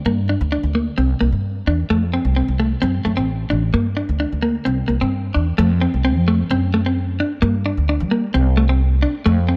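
Light studio reverb frames this carefree highlife guitar band passage, cut from a longer piece in a straight 4/4 feel. A clean, picked electric guitar with a dark tone plays accompaniment in a narrow middle register, while a woody, growly pizzicato upright bass on steel strings sits up front beside it, both entering at 0.1 seconds and playing through to the close. The harmony cycles through Gm, C, F and D7, then a second section from 5.6 seconds moves through F, D7/F#, Gm and a closing Csus2.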